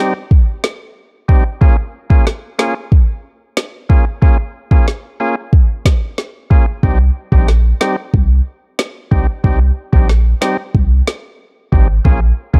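Dancehall with a sultry, bouncy mood, this clip from a longer piece opens on a gritty, overdriven tonewheel organ with key click, percussive third-harmonic attack, vibrato and sidechain pumping, sitting low in the mix beneath an up-front, electronic afro-pop drum kit of deep kick, rim click and woody snare that enters at 0.3 seconds. At 6.8 seconds, after the opening break, a boomy 808-style bass with a sine tone, noise layer, fast attack and decaying notes arrives up front to thicken the groove as the chords move between Cm and Bbm7. The production is dark and warm, set in a digital ambience.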